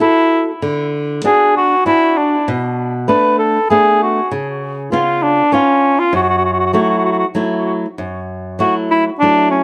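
A mellow, close-miked cor anglais carries a wistful, romantic melody in classical style with light vibrato and a touch of analog delay, while a bright, fingerpicked flamenco guitar with fresh strings accompanies up front through this Italian folk piece in 3/4, cut from a longer piece and set in a dark production with moderate studio reverb.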